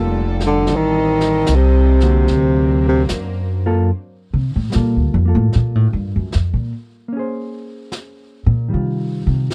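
A dry, close 1970s-style studio sound frames this wistful, melancholic swung jazz ballad, where a dark, subtone baritone saxophone sings briefly up front over floating, sul tasto bowed strings that stop at 3.9 seconds, clean fingered hollow-body guitar accompaniment and brushed drums with a rolled-off top, before the woody, thumpy gut-string upright bass takes a pizzicato solo from 3.9 seconds.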